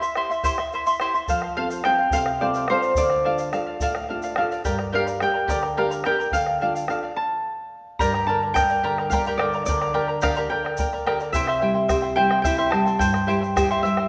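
Andean folk excerpt in 6/8 at 72 BPM, festive yet melancholic, in which a mellow, ringing Celtic harp carries the melody over a shimmering, up-front charango with double strings, a dark, full-bodied thumb-plucked nylon-string guitar entering at 1.3 s, a deep, close bombo and a grainy, band-limited egg shaker, with a brief stop at 7.2 s before a new section opens at 8.0 s in a moderate recital-hall reverb.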